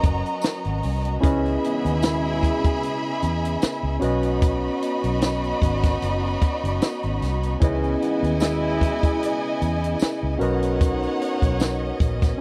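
A compact cocktail drum kit with a high-tuned snare and punchy kick sets a 75 BPM, lightly swung 4/4 groove for this silky, bittersweet excerpt of lush 1970s-style soul, where a round, foam-muted electric bass holds the low end, a gritty, barky overdriven tine electric piano carries the accompaniment, a distant violin section with soft attack adds a second line touched by slapback echo, a bright string section sustains chords in the background, a clear trombone section punctuates with stabs from 1.2 to 9.6 seconds, and a very quiet, jingly tambourine sits close in a dry, intimate studio sound.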